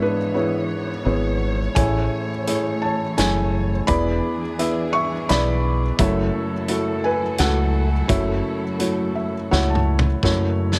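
Acoustic folk-pop ballad in a reflective, melancholic 3/4, with a felt-muted upright piano carrying the melody in a soft, intimate tone where the action noise is audible, distant bowed strings holding sustained chords with vibrato and portamento, a dark, round fingered electric bass entering at 1.1 seconds, and a gritty, saturated indie drum kit with a punchy kick joining at 1.8 seconds, all captured dry and close before a piano fill at 8.8 seconds and drum fills close this excerpt cut from a longer piece.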